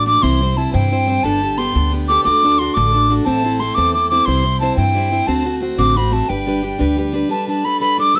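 A lively, bright Celtic jig in 6/8 opens with a mellow, hollow wooden whistle carrying the melody up front over a picked, full-bodied steel-string acoustic guitar and a woody pizzicato upright bass that drops out at 7.2 seconds, the whole short cut from a longer piece sitting in light reverb.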